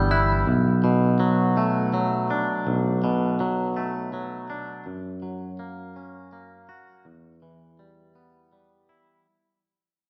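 Brooding and cinematic, this short rock excerpt moves at a slow 55 BPM in 6/8 with a straight feel, set in B minor. A twangy, clean electric guitar sits up front, playing fingered arpeggios from 0.0 to 9.3 seconds across a range from low B1 up to F#4. A glockenspiel struck with brass mallets adds a brief metallic, bell-like glint of arpeggios in the background, ringing high between F#6 and G6 only in the first 0.5 seconds, its tone vintage and band-limited. The harmony moves from Bm7 to F# at 4.9 seconds and then to Em. A wet recital-hall reverb gives the recording the spacious air of a church or concert hall, and the whole passage fades out across its length, having been cut from a longer piece.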